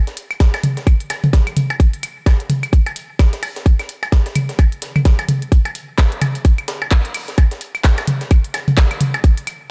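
A dry, dark mix frames this cool, clinical techno fragment, cut from a longer piece and carried by a swung sixteenth-note feel. Overdriven electronic claves, percussion blips and toms that sound boxed into a small room arrive at 0.3 s, followed at 0.4 s by a tight, layered electronic kick sitting up front. Beneath them, a minimal click kit adds clicky hats and handclaps with a roomy, overdriven edge, while a faint, gritty sampler-style breakbeat kit supplies compressed, high-passed hi-hats and a high-tuned snare.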